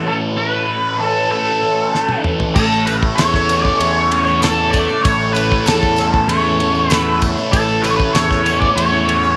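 Kaleidoscopic and trippy, this psychedelic rock excerpt moves at 97 BPM in a straight 4/4, centered on A major. It opens on a break where a double-tracked fuzz guitar riff, bright and compressed with phaser, sits up front beside a dark octave-fuzz lead guitar whose melody runs through wah and tape echo, while a very quiet tonewheel organ holds smooth sustained chords with key click and a slow rotary speaker. A drum fill at 1.9 seconds brings in the damped 70s kit, dry and mid-forward with a fat snare and tight kick, working across crash, ride and toms. At 2.6 seconds the second section arrives as a punchy, overdriven fuzz bass and a jingly, very quiet tambourine join the groove. Light reverb gives the mix a touch of space.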